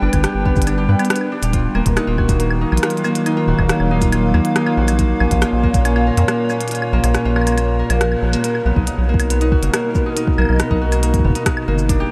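A rubbery, hollow square bass sits up front in this wistful, playful IDM excerpt, under bright, ringing fingerpicked concert harp arpeggios with tape echo, a warbling, nostalgic lo-fi pad of sustained chords, a clicky glitchy kit of claves, hi-hat, rim click and shaker with analog delay, and a soft electronic kick that drops out at 5.8 seconds and returns at 8.8 seconds, all soaked in a dreamy, huge ambient reverb.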